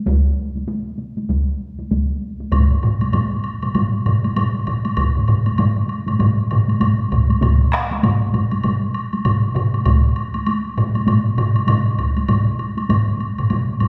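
Two taiko drum parts open this powerful, driving Japanese traditional passage at 98 BPM in 4/4 with swung sixteenths: one struck with heavy sticks and miked close and dry, the other played with hard sticks in a live room. At 2.5 s a third taiko with heavy sticks joins in the background, along with a fourth hard-stick taiko pushed up front with a compressed, saturated edge, and a woody woodblock. The hard-stick drum from the opening drops out at 12.2 s, and the whole ensemble sits in a recital-hall reverb, in this section cut from a longer piece.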